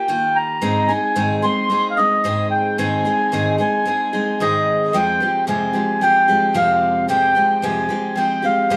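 Reflective and wistful, this short excerpt of acoustic folk moves at 111 BPM in a straight 4/4, set in F minor. A mellow, reedy accordion carries the melody up front, its slow beating and mid-forward tone sitting high between Eb5 and C6. Beneath it, a picked steel-string acoustic guitar supplies bright accompaniment from F2 to Ab4, also placed close to the listener. Both parts play together throughout the 8.8 seconds, moving from Ebadd9 to Ab and then settling on Fmadd9 at 4.9 seconds. A moderate small-room reverb gives the pair an intimate setting, though lossy compression artefacts are audible in the sound.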